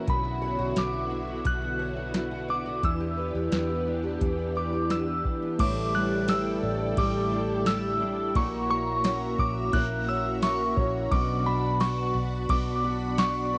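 This haunting, ethereal dream pop excerpt opens with a string machine's sustained violin chords, shimmering and bright under ensemble chorus, alongside a shimmering, octave-doubled twelve-string acoustic guitar picking arpeggios through analog chorus and tape echo. Almost at once a glassy, crystalline FM synth bell carries the high melody, warbling with chorus and tremolo, while a round, foam-muted electric bass gives punchy low support with tube saturation. A soft vintage rhythm box sits up front, its deep kick, crisp snare, metallic hats, cymbals and tambourine roughened by overdrive. At 5.6 seconds a dark, clean, compressed electric guitar joins with accompaniment bathed in lush chorus and tremolo, and a ringing vibraphone enters faintly in the background at 5.9 seconds. The chords move from Bmadd9 through Em7, A7sus4 and F#7/A# before returning to Bmadd9, all within a moderate spring reverb and the hazy grain of a home cassette recording.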